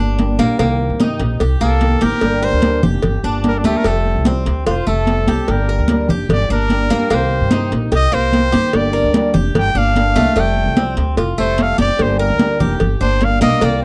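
Cuban son in the guajira vein, this nostalgic, danceable fragment of a longer piece moves at 148 BPM in a straight 4/4, set in G minor and cycling through Gm, Cm7 and Fadd9. A dark, boxy old ladder-braced acoustic guitar is fingerpicked for accompaniment with worn strings, while a bright, metallic Cuban tres plays arpeggios on its doubled strings. Up front, a woody, thumpy upright bass with gut strings anchors the low end, and from 0.2 seconds the congas, damped, high-tuned and thick-skinned in the background, join a tight cowbell struck with hard hands. At 1.6 seconds a clear trumpet enters, taking the melody as a solo with vibrato in a pop style, sitting prominently over the band. The sound is close and dry, with little reverb, in the manner of a 1970s studio recording.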